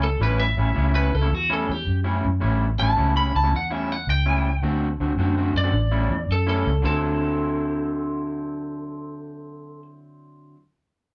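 Electric blues shuffle, rollicking and gritty, cut from a longer piece, with a band playing live in one small, wet-sounding room. A twangy, slightly broken-up rhythm guitar through a small old amp drives the riff while a dark, foam-muted, round bass sits up front beneath it, and a compressed, picked lead guitar with light drive carries the melody until 9.8 seconds. The changes move from A7 to D7 and back, landing on a D9 at 6.8 seconds.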